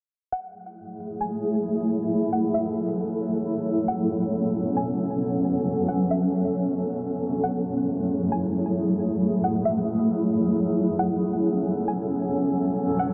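Hip hop in F# minor at 135 BPM with a half-time feel, this melancholic, ethereal fragment is cut from a longer piece and moves between F#m9 and A69 chords. A cloudy, evolving granular pad of wave-folded triangle tones sits up front from 0.9 seconds, holding blurred, sustained chords with a slow attack, long release and its own reverb. Entering at 0.3 seconds, a softer, bright, twangy string-like pluck with a sawtooth edge and noise layer plays a high melody through chorus, delay, a low-pass filter and a filter sweep, all within a dark, warm production bathed in moderate shimmer reverb with a 5.2-second tail.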